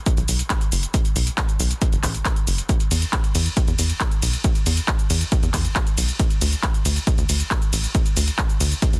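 Uplifting trance with a driving, euphoric feel, this short cut runs in a straight 4/4 built from a punchy, layered electronic kick and a techno kit of handclaps, metallic hats, ride cymbal and shaker, whose hats, percussion and cymbals pump with sidechain. Underneath, a tight, dark sequencer bass blends sawtooth, square and triangle tones with a detuned, fast-attack filter pluck, moving between F#1 and E2 and also pumping with sidechain. The drums and bass sit up front with little reverb in a dense, heavily limited modern master.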